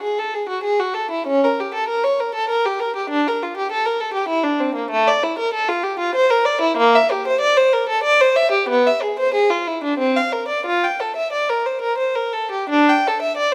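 A lone bowed violin with a reedy, gut-string tone and light vibrato carries this serene, radiant baroque-style suite movement in triple time, played in period style with a flexible, rubato feel. Captured up close and in detail, the single player sits at the front of a moderate recital-hall reverb that gives the line a gentle bloom. The violin plays throughout this short cut from a longer piece, which ends at 13.5 seconds.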